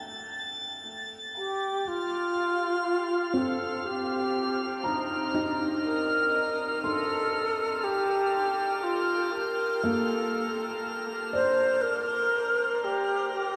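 A slow, straight 4/4 pulse at 60 BPM carries this luminous, peaceful ambient excerpt in Eb lydian, where a felt-muted upright piano spins mellow, intimate arpeggios through tape echo beneath a glassy, drifting high texture of glass harmonics softened by chorus. At 1.4 seconds an airy, bright alto flute enters up front with expressive vibrato, its melody also touched by tape echo, as the harmony settles from A7(omit3) onto Ebadd9 and later Bbadd9. A long shimmer reverb and a vintage cassette grain bathe the whole piece in a hazy, suspended glow.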